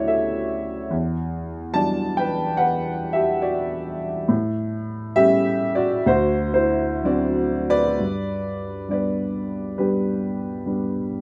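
Unfolding in a flexible rubato over a 4/4 pulse, this short classical excerpt for solo grand piano carries a wistful, reflective mood from a longer piece. The piano sits up front with a dark, boxy tone, ranging from the low bass to the upper middle register as the harmony drifts through Dmaj7, Em9, A7 and D7 before settling onto G at 8.0 seconds to open a new passage. A moderate studio reverb gives the playing a modest sense of room.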